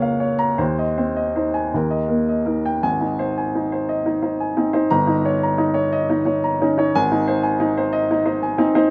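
A clear, woody upright piano sits up front in a close, detailed and nearly dry room for this stormy yet bittersweet romantic character piece, a short passage cut from a longer work, moving in a rubato 6/8 at about 52-62 BPM in Ab major (tuned to A4 = 444 Hz), spanning G1 to Bb5 with a natural tone as it opens on Bbm/Db, settles onto Ab by 2.8 seconds, and passes through Eb7/G before returning to Ab at 6.9 seconds.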